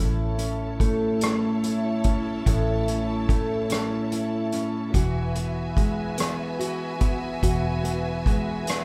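A full-bodied fingerpicked steel-string acoustic guitar sits up front in this swaying, heartfelt six-eight pop ballad at 48 BPM in A major, backed by lush bowed strings with vibrato holding sustained chords, a dark, round, foam-muted electric bass, and a roomy soft-mallet drum kit with a punchy kick, hi-hat and rim click that enters at 0.4 seconds, all played live in one room with light reverb as the harmony moves from A to Eadd9 at 4.9 seconds in this short cut from a longer piece.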